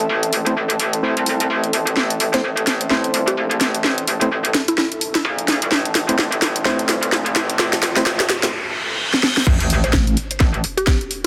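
Gritty and aggressive, this 128 BPM bass house excerpt in A minor swings through a build-up over an Am chord, where a metallic, wobbling, overdriven bass, cracking garage drums with fills, dark hollow organ stabs, a woody mallet-like pluck melody, an ethereal pad in the background and a riser with reverse cymbal build toward a drop at 9.5 seconds that brings in a tight overdriven kick and a heavy, distorted pulsing wobble bass, all set in a lush hall reverb and a dense, heavily limited master.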